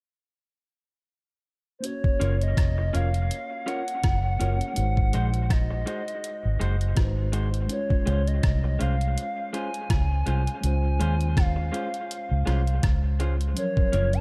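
After a brief opening, a thumpy, overdriven 8-bit drum machine with kick, hi-hat and rim click enters at 1.8 seconds alongside a mellow tine electric piano and a reedy, woody FM lead that carries the melody with soft-attack vibrato, chorus and tape echo. Moments later a round, punchy foam-muted electric bass sits up front, while a dark, slightly broken-up electric guitar adds lo-fi picked stabs bathed in spring reverb and dub echo. This smooth, sweet lovers rock reggae groove swings gently over jazzy major-seventh and dominant chords in a dry, close-sounding room, cut from a longer piece.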